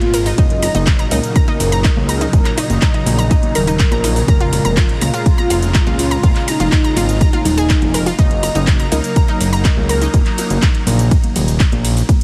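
This 12-second cut from a longer progressive house piece has a dry, heavily compressed, loud radio sound, with a hopeful, uplifting mood at 123 BPM in a straight 4/4 and F# major, moving from F#6 to C#6/E# at 4.3 seconds and back. A punchy, tape-warm electronic kick sits up front from 0.4 seconds, joined by a house kit of handclaps, metallic hats, ride and shaker in a touch of studio ambience, while soft-handed bongos and congas sit band-limited in the background. A fat, detuned sawtooth bass with a filter sweep pumps against the kick beneath a lush supersaw pad that breathes slowly through a phaser. On top, a velvety, full-bodied lead carries the melody with vibrato, chorus and digital delay until 10.1 seconds, alongside a round, bright analog pluck playing arpeggios that reach as high as A#6. From 2.6 seconds a very quiet reversed, granular texture swells dreamily on a single high A#5.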